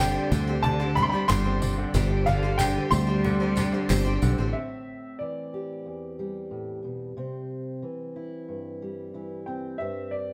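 A clear, worn upright piano carries the melody from start to finish, its slightly detuned, woody tone touched by slapback echo in this yearning, wistful indie folk passage cut from a longer piece. For the opening 4.5 seconds the arrangement is full: a rich, bowed cello with vibrato sings a second line, a picked twelve-string acoustic guitar adds shimmering, octave-doubled sparkle, and a second, brilliant upright piano spins arpeggios with audible action noise and long sustain. Beneath them, a punchy, foam-muted fingered electric bass sits up front, while a mellow tonewheel organ holds very quiet, round chords through a slow rotary speaker. Crisp group handclaps and a jingly tambourine keep a straight pulse from the background, joined just after the start by a woody cajon with faint snares, though kick and snare drop out from about 1.9 seconds. At 4.6 seconds nearly everything falls away, and a dark, fingerpicked steel-string acoustic guitar with old strings steps up front beside the lead piano. 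The band plays live together in a stone room, which gives the sound a moderate, natural reverb, and the harmony moves from suspended chords into minor-seventh colour.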